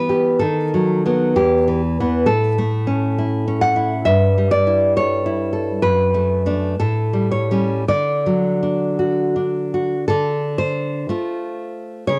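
A fingerpicked nylon-string guitar plays up front, bright and full-bodied with fresh strings and an audible finger squeak, ranging from E2 to F#5 in this nostalgic, sunny romantic piece for solo classical guitar. In D major and 2/4 at a rubato 52-70 BPM, tuned to A4 = 437 Hz, it moves through B/D#, Em, A and A7/G to settle on D at 7.8 seconds, then turns to D minor as a new section begins at 10.1 seconds. This home recording on cassette carries a cassette-tape grain and a moderate spring reverb within studio ambience, and it is a short excerpt cut from a longer piece.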